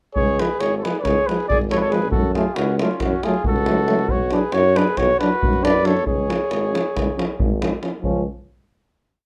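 A moderately roomy studio sound frames this short, fiery Balkan brass band piece in a straight 9/8. A soft-edged flugelhorn carries a motif-based melody up front, while a close-miked trumpet with light vibrato follows it in a harmony line, mostly in thirds. A distant tuba plays root-and-fifth bass on the main beats, a clear trombone and a smooth euphonium each take a line of the offbeat chords, and a tight two-stick davul drives everything toward the closing chord at 8.0 seconds.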